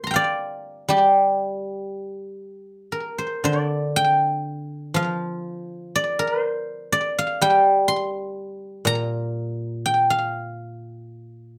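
This Chinese traditional piece for solo plucked strings is a short excerpt cut from a longer work, with a longing, elegant mood. A single guzheng, played with fingerpicks, carries the music from 0.0 to 11.6 seconds, ranging from Bb2 up to C6. The pulse sits in 2/4 but moves freely in rubato with uneven beats, and the music shifts into a new section at 3.4 seconds. The guzheng's silvery, ringing tone sits up front, with a slapback echo trailing its notes. Close, detailed microphones and light reverb keep the sound intimate and clear.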